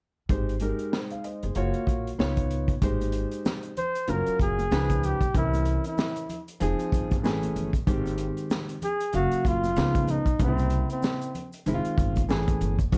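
A swung 16th-note groove at 95 BPM in 4/4 drives this relaxed, smooth jazz-hop excerpt in Ab major, tuned to A4 = 435 Hz. The crunchy breakbeat kit sits up front with a punchy kick, high-tuned snare and hi-hat, its saturated, gritty sound rolled off at the top and set in a small room. A woody, thumpy pizzicato upright bass on gut strings holds the low end. A dark, vintage grand piano plays the accompaniment up close, its action noise audible under plate reverb, moving through Abmaj7, Gbmaj7, Db9, C7b9 and Fm7 before a turn to Amaj7. At 2.8 seconds maracas and congas join in the background with hard hands and a ringing live-room tone, and a breathy flugelhorn carries the solo melody from 3.8 seconds to 11.5 seconds, mellow and jazz-inflected with vibrato, scooped notes and its own plate reverb. The production is dusky and warm with light reverb.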